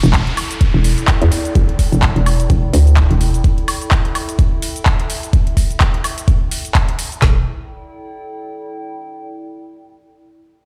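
A swung sixteenth-note groove of layered electronic garage drums, with a knocking kick and woody snare up front and handclaps, metallic hats, shaker and woodblock further back, drives this swaggering, gritty bass house excerpt, where a hollow, bouncy FM bass with tube saturation and sidechain pumping drops out alongside an electronic downlifter at 3.4 seconds and returns only briefly at 7.2 seconds, while a fading, nostalgic lo-fi pad, detuned and warbling with chorus and its own pumping, lingers to 9.1 seconds, the whole mix set in the stone reverb of a bare room.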